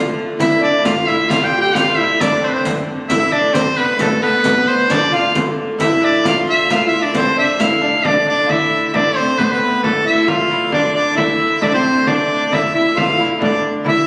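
Mysterious and ancient, this medieval dance in triple time opens with a smooth, even hurdy-gurdy drone at 0.0 seconds before a bright, vibrato-laden shawm takes the up-front solo melody at 0.4 seconds, over a reedy, nasal viola da gamba and a delicate fingerpicked lute in the background, with a vintage-toned frame drum and a riq with dark jingles that drops out at 7.8 seconds, all heard through a lush concert-hall reverb in a phone recording made in the room.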